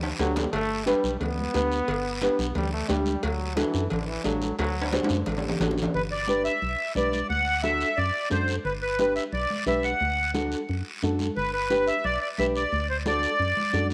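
Cumbia at 177 BPM in G major, a festive, danceable cut from a longer piece that moves between G and D chords: a hollow, dark FM bass with an organ-like tone and a full-bodied, thumb-plucked nylon-string guitar run throughout, with a raspy guiro and high-tuned, ringing congas in the background; vintage, band-limited timbales and cowbell with drum fills and a bright, punchy trombone carrying vibrato and tape echo open the piece and drop away by 5.9 seconds, when a sweet, reedy accordion with light tremolo tuning and tape echo takes the melody up front, inside a moderate echo chamber.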